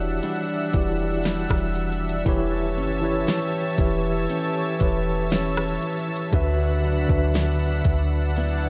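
Contemporary R&B at a slow 59 BPM in 4/4, this sensual, late-night excerpt moves through Em9, A7/E and Bm11, with a mellow tine electric piano up front, a deep, round 808-style bass and a smooth, tape-warm electronic drum kit of soft kick, fat snare, rim click and smooth hats that enters at 0.2 seconds. Behind them, a lush, detuned sawtooth unison pad holds airy sustained chords with chorus and sidechain pumping, while a boxy parlour steel-string acoustic guitar, with fresh strings and audible finger squeak, plays fingerpicked arpeggios in the background through subtle chorus and diffuse ambient delay. The whole dreamy mix is soaked in a huge ambient reverb with a 9.2-second tail.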